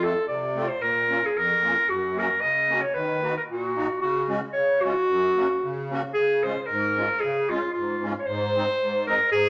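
A studio reverb surrounds this short cut from a longer alpine folk dance tune, played at 113 BPM in a lightly swung 2/4 with a jolly, festive mood. A clear, distant-sounding clarinet carries the melody up front in a classical style, while a reedy, shimmering musette accordion, close-miked and dry, fills out the accompaniment underneath. The music begins in F# major and moves to Db major at 6.1 s for a new section that runs to the end at 9.5 s.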